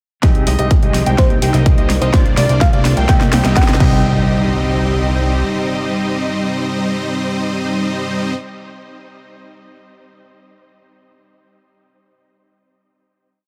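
A punchy four-on-the-floor kick and an overdriven big-room kit with programmed hats, a huge snare and crash cymbals drive this euphoric, powerful festival progressive house piece in C minor at 126 BPM, playing a drum fill through the build-up until 3.9 s, while a fat, saturated analog bass locked to the chord rhythm holds until 5.4 s. A detuned supersaw riff of pulsing gated chords runs through a filter sweep with tape echo, supported by a lush chorused pad and a dark grand piano doubling the chords in arpeggios, all three pumping against the sidechain, while a clean, very quiet electric guitar adds held chords with syncopated pushes. In the background, a sparkling, bell-like FM electric piano offers short answering phrases with tremolo, and a riser and impact from 2.3 s lead into the final hit under light reverb.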